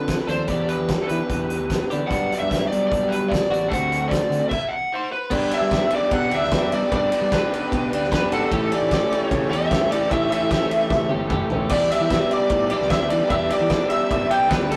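A straight 4/4 pulse at 150 BPM drives this carefree, jangly indie rock cut in G major, taken from a longer piece. A loose, roomy acoustic kit sits up front with a fat snare, punchy kick and dark cymbals, while a picked electric bass anchors the low end with a warm, direct tone. Up top, a lead guitar through a small cranked amp carries the melody with gritty overdrive. Behind it, a crunchy guitar soaked in spring reverb and a bright, compressed twelve-string share the riff over chords moving through Em7, Gmaj7, D7 and A7. During a brief stop, a dreamy FM bell with a chorus halo adds a second line from 5.0 s, and a reedy combo organ with light vibrato joins very quietly on sustained chords at 5.3 s. A drum fill at 10.9 s leads back to Em7, and the whole take has the rough, tube-saturated feel of a rehearsal room with a stone-walled reverb.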